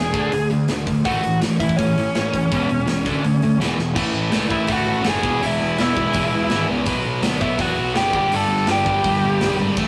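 This short excerpt of rebellious, energetic punk rock opens with a biting lead guitar, overdriven and up front with a tape echo trailing its melody as it ranges from C#4 to A5 in A major. Beneath it, a bright, double-tracked distorted electric guitar hammers out a compressed, picked riff, while a growly fuzz-toned picked bass, direct and amped, anchors the low end from E1 to E2. A tight metal drum kit joins at 0.1 s with crash cymbal, hi-hat, a tight kick and a medium-tuned snare, driving a straight 4/4 at 165 BPM. A drum fill at 3.8 s launches the second section at 4.0 s, where the harmony moves through A, E, Bm and G5 after the opening D5, A and E5 changes. The rough rehearsal-room sound carries saturation and a moderate stone-room reverb that gives the drums a big space.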